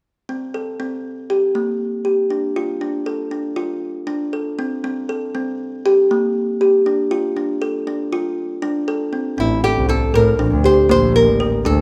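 Set in a moderate recital-hall reverb, this hypnotic, restless contemporary instrumental in 9/8 opens with a woody, thumbnail-plucked kalimba playing arpeggios over Am, Gm/Bb and Dm, until at 9.4 seconds a boxy, fingerpicked nylon-string guitar melody and an earthy bowed double bass with light vibrato join it up front, in a short passage cut from a longer piece.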